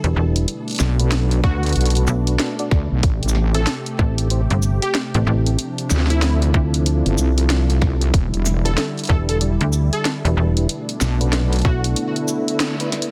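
Swaggering and gritty, this glitch hop excerpt struts at 94 BPM in A minor with a swung sixteenth-note feel, its chords moving from Bm7 through Am7, Dm7 and Em7 before settling on E7sus4 at 12.0 seconds. A smooth sawtooth pad sits in the background with chorus, 12-bit sampler grit and sidechain pumping, while a soft, flute-like tonewheel organ plays percussive stabs through chorus vibrato, a slow rotary speaker, digital delay and the same pumping. Two basses dominate the low end: a snappy FM bass with a metallic attack runs from the start, and a heavy, saturated wobble bass with chorus and overdrive joins at 0.8 seconds. A bright, punchy unison lead carries a catchy melody from 1.4 seconds, its detuned sawtooth tone shaped by a filter sweep, vibrato, ensemble chorus, cassette tape colour and digital delay. A tight, up-front electronic kick anchors a layered kit of hi-hat, shaker and cracking snare, and the full band hits an accent at 12.6 seconds before a drum fill, all within a dense, heavily limited modern master.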